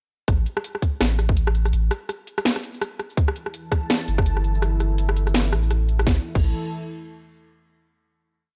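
A dry, gritty cassette-tape sound frames this short, spacious and heavy half-time drum and bass piece at 166 BPM with a swung feel, where an overdriven, up-front electronic kick and a sparse kit of cracking snare, bright closed hats, rim clicks, shaker and crash drive the drop from 0.3 seconds over long, thick saturated sub bass notes, while a moody, detuned analog pad with chorus and sidechain pumping enters at 3.2 seconds and holds a final chord from 6.1 to 7.5 seconds.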